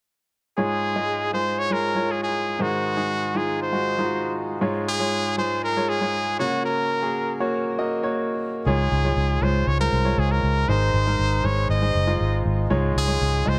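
Pop in Db major at 119 BPM, this hopeful, uplifting excerpt opens at 0.6 s with a forceful solo trumpet singing the melody with vibrato over a bright grand piano whose long sustain and audible action noise keep it intimate and present. At 8.7 s a vintage foam-muted fingered electric bass enters, round and punchy. The chords move from Db to Ab and Gb under a dark production with light small-room reverb, tuned to A4 = 435 Hz.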